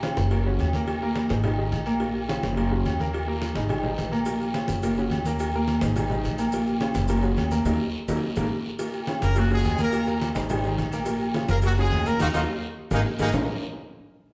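Passionate and danceable, this salsa excerpt drives along at 212 BPM in Bb minor, a fragment lifted from a longer piece. A bright, slightly detuned upright piano sits up front with a worn, intimate character, its audible action noise and long sustain giving the accompaniment real presence, while a woody, thumpy upright bass with gut strings plays pizzicato beneath it. Behind them, low-tuned congas with a damped, thick-skinned sound, tight high-tuned cowbell and bongos, ringing metal-shelled timbales with agogo bells, and a raspy, vintage guiro build the percussion bed, with grainy, saturated maracas joining at 4.3 seconds. The harmony circles through Bbm, Gb and Absus2, with the band landing accents and drum fills near 7.7 seconds and again toward the close. At 9.2 seconds a punchy horn section enters up front with a light vibrato and a pop-style ensemble sound, carrying the melody over richer Gbadd9 colours before settling on Bbm7. 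The whole band is heard from further back in a large studio, bathed in a lush reverb.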